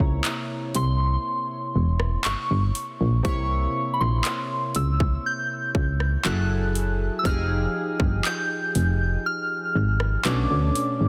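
A punchy, round FM bass sits up front in this moody, longing contemporary R&B fragment, joined throughout by an overdriven trap kit with a hard-clipped kick, metallic hats, handclaps and rim clicks, by detuned analog keys carrying chorus and a filter sweep, and by a pure, mellow synth bell melody high above, colored with chorus, phaser and digital delay, the mix set in light digital ambience with a dense, heavily limited master.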